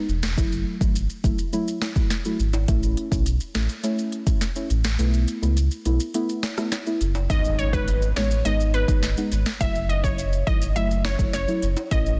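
A deep, full sub bass with an octave layer sits up front in this hypnotic, bouncy dancehall clip, cut from a longer piece and moving at 104 BPM in a straight 4/4. Beside it, an electronic afro-pop drum kit with a tape-warm sheen drives the groove with a deep kick, sharp snare, smooth hi-hats and rim clicks. A dark, mellow chord stab with detuned, wave-folded tones and chorus outlines F#m7, A and B7sus4, while close, dry maracas and timbales ring out under hard hands. The kick drops out at 5.0 seconds, and at 7.3 seconds the second section opens with a very quiet electronic impact and a glassy, crystalline wavetable pluck carrying the melody, bright and detuned with a filter sweep, chorus and digital delay, as the chords move to G#m and back to F#m7. The mix sits in a digital ambience with a dense, heavily limited modern master.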